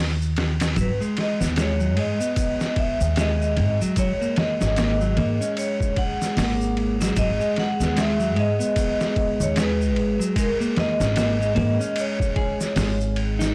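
Melancholic and smoky, this trip hop excerpt moves at 75 BPM in 4/4 with a swung sixteenth feel, set in G# minor. A woody, pizzicato upright bass opens alone at 0.0 seconds, sitting up front, and is soon joined by bright, band-limited tube shaker and congas played with soft hands, then a pitched-down, compressed sampler-style drum kit with a thumpy kick, medium-tuned snare, hi-hat and ride in a small room. From 0.8 seconds, a metallic, ringing vibraphone struck with hard mallets carries the melody through 12-bit sampler grit and dub echo, while a clean, picked electric guitar plays dark arpeggios with the same grit. Underneath, a deep analog pad built from detuned square, sawtooth and sub-octave tones holds slow-attack chords with chorus in the background, moving from G#m7 through D#m7/G# and back before settling on D#7sus4/G#. The whole recording is blown-out and overdriven, coated in vinyl crackle.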